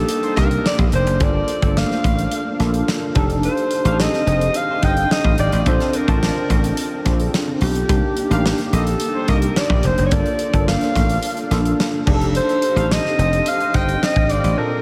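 A straight 4/4 groove at 108 BPM drives this urban, bittersweet slice of polished 1980s jazz-funk pop, where a bright, foam-muted thumbed slap bass and an acoustic studio drum kit with a fat snare and punchy kick sit up front beneath a breathy, mellow alto saxophone melody with scooped notes, while a worn, slightly out-of-tune tine electric piano with overdrive and analog chorus supplies chords moving from Cm9 through Gm7, F13 and Bbmaj9, a very quiet horn section adds brief clear lines, and a huge 7.6-second reverb soaks the mix in a dreamy haze before a break at 14.6 seconds.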